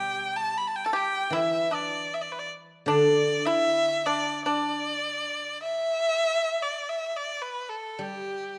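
Chinese traditional chamber music, graceful and festive, moves at a rubato 77 BPM in 2/4 in the D zhi mode, led by an up-front solo erhu whose bowed melody sounds bright and earthy with light vibrato and portamento, joined by a percussive, fingerpicked pipa second line that drops out at 5.6 seconds and a ringing, silvery guzheng accompaniment that pauses at 5.2 seconds and returns at 8.0 seconds, the ensemble set in a wet recital hall reverb in this short cut from a longer piece.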